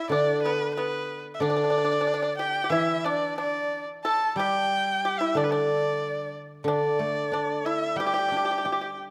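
Close, detailed microphones set three instruments in a moderate concert hall reverb, in this festive, pastoral passage of Chinese traditional chamber music cut from a longer piece, moving at 92 BPM in a rubato 2/4. Up front, a single bowed erhu carries the melody with a rich, focused tone, colored by vibrato and portamento. Beneath it, a dry, percussive pipa plucked with fingerpicks adds a second line, while an equally forward guzheng, also fingerpicked, supplies mellow accompaniment with a ringing, silvery shimmer.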